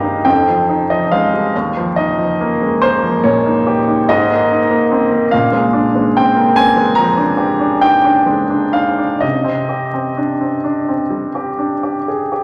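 In a rubato 9/8 lilt, this dreamy, luminous fragment of impressionist classical solo piano has a clear, intimate baby grand sitting up front with audible action noise, drifting from Fm9 through Ebadd9, Abadd9 and Bb13 to Cmadd9 inside a wet recital hall reverb beneath a layer of vinyl crackle.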